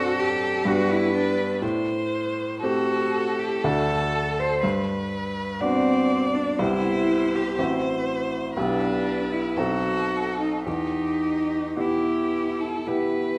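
A vibrato-rich solo violin sings a yearning, elegiac melody over a focused, bowed cello line and the clear, intimate baby grand piano (its action noise audible), in an excerpt from a slow, romantic piano-trio movement in E minor at 60 BPM in 3/4, played with rubato and uneven beats, bathed in wet scoring-stage reverb as the harmony passes through B7b9 to settle on E minor at 10.7 seconds.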